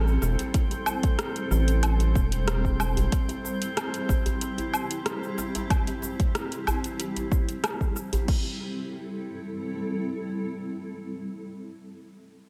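A cloudy, granular pad, a round analog bass and a glassy texture of drifting overtones open this meditative, earthy organic downtempo excerpt on an Am7 chord, with the bass stopping at 3.1 s while a deep house kit with metallic hats, a cracking djembe with metal rattles and an overdriven, up-front electronic kick play on until about 8.4 s, after which the blurred pad sustains alone to 11.6 s in an echo-heavy mix.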